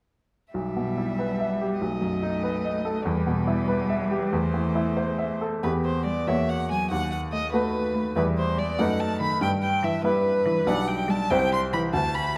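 A wet recital hall reverb, with a decay of about 1.5 seconds, surrounds this urgent, dramatic passage cut from a quick classical-period movement for piano trio. The music is in E minor and 6/8, moving at 95 beats per minute in dotted quarters with a rubato feel. All three players enter together at 0.5 seconds: a rich, up-front solo violin carries the melody, bowed with vibrato, while a clear cello adds a focused second line beneath it. The baby grand piano, bright and brilliant with a natural tone, sits up front in the accompaniment and covers the broadest range of the three. The harmony opens around E minor and B7 before the passage turns at 5.6 seconds to a new section with chromatic colour from F#7 and B7 over D#, then closes on a C chord as the violin and piano hold on to 12.4 seconds.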